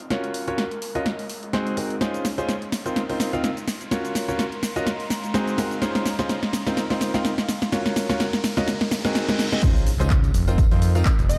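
A swung 126 BPM groove in 4/4 drives this joyful, uplifting piano house piece in Db major, opening on a punchy, tape-tinged house kit of handclaps, hi-hat, shaker, snare and crash, with an electronic riser and reverse cymbal building underneath. Above them, a clear, intimate baby grand piano riff with audible action noise pumps through delay and a low-pass filter, while a warbly, nostalgic lo-fi pad sits in the background, cycling through Gbmaj7, Ab9, Dbmaj9 and F7sus4. At 9.6 seconds the drop lands with an impact, bringing in a punchy electronic kick, a fat, detuned sawtooth bass with tube saturation and a faint tambourine, before a plucky unison lead touches in at 11.3 seconds, all inside a dark, moderate room reverb.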